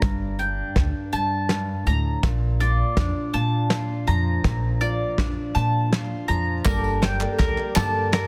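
Indie folk with a building arrangement, this hopeful, uplifting excerpt moves at a slow 54 BPM in a straight 6/8, in Bb major and tuned slightly low, moving from Gmadd9 to Bbmaj7 and back. From the start, a fingerpicked steel-string acoustic guitar supplies concert-style accompaniment while an up-front mandolin spins arpeggios with the ring of its double strings. Beneath them, a pizzicato upright bass sounds woody and thumpy, and a soft brush drum kit, dark and smooth with a fat snare and punchy kick, plays a drum fill throughout. At 6.6 seconds a picked twelve-string acoustic guitar takes over accompaniment with a boxy, shimmering, octave-doubled tone. A mellow, flute-like tonewheel organ with key click and a slow rotary speaker enters at the same moment to hold sustained chords in the background. From 6.7 seconds, crisp, close group handclaps and a very quiet, jingly tambourine join, all set in a small room under a dense, heavily limited modern master.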